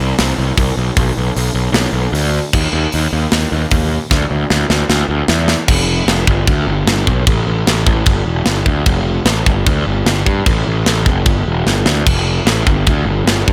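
A straight 4/4 punk rock pulse at 151 BPM opens in half time and drives into full, energetic, upbeat momentum at 5.7 seconds after a drum fill from 4.1 seconds, with a picked electric bass in a growly, bright overdriven fuzz tone sitting up front in its low register alongside a tight metal drum kit of crash cymbal, hi-hat, tight kick and medium-tuned snare that sounds mid-forward and big-roomed, adding another quick fill at 11.7 seconds in this dry, cut-short passage.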